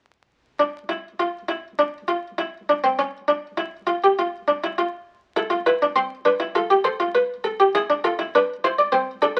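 A classical, baroque-style three-part fugue for solo buff-stop harpsichord, this short excerpt is cut from a longer piece and moves at 101 BPM in a straight 4/4 with a driving yet solemn character. The harpsichord, in the Italian style, sits up front with a muted, lute-like pluck and a dry tone, staying within the range of C4 to D5. It plays from 0.6 seconds to 9.4 seconds, opening unaccompanied by chords before the harmony settles on A minor at 5.4 seconds, moving through F add9 and arriving on E7 at 7.7 seconds. The instrument is tuned slightly below modern pitch, at A4 = 439 Hz. A moderate studio ambience surrounds it, and the sound carries the crackle and character of a very old 78 rpm record.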